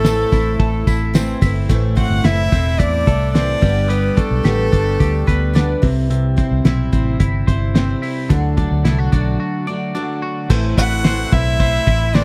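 A steady, straight 4/4 at 109 BPM drives this short cut from a longer piece of jangly indie pop in A dorian, bittersweet and restless in mood. Up front, a cloth-damped drum kit thuds with a fat snare, tight kick and dark, rolled-off cymbals, its sound gritty and saturated, while a vintage foam-muted fingered bass sits just as forward with a round, dark, amped tone. A bright, twangy twelve-string electric guitar spins compressed arpeggios over a woody, full-bodied twelve-string acoustic that shimmers with octave-doubled picking, and a jingly tambourine adds a touch of sparkle in the opening moments. An intimate violin carries the melody with an airy sul tasto bow and light vibrato, shadowed by a distant, roomy cor anglais playing a second line in the background; both fall away at 5.8 seconds and return at 10.8 seconds. The chords move from Am through G, C and D before a brief break and a return to Am, all captured in a dry, close, 1970s-style studio sound.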